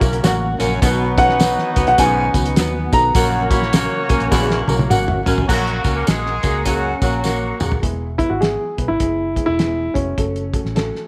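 A cloth-damped, thuddy drum kit, round foam-muted bass, woody tube-saturated upright piano, slow-rotary tonewheel organ, chorus-lush clean guitar riff, jingly tambourine and a punchy, roomy horn section open this swung, danceable 1960s-style soul excerpt at 103 BPM, with a raspy, gritty baritone saxophone riff arriving at 0.6 s, an up-front baby grand piano carrying the melody from 1.2 s, and the horns, organ, guitar and tambourine dropping away by about 7.8 s as the harmony moves to E, the whole band sitting in an echo-chamber reverb.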